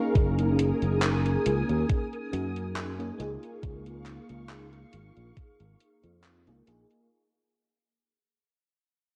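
A growly, up-front fretless electric bass with a filter sweep anchors this nostalgic, woozy vaporwave fragment at 69 BPM, moving from Gb69 to Db6 as the piece fades out across its 7.1 seconds. A lush, dreamy FM electric piano with a soft pad layer drifts through phaser, chorus and tape echo over silky vintage string-machine chords, while a thumpy electronic kick and a gated 80s drum machine with handclaps and hi-hat keep a lightly swung pulse, the kick stopping at 5.6 seconds. Concert hall reverb and worn cassette tape lend the mix a warbling pitch drift.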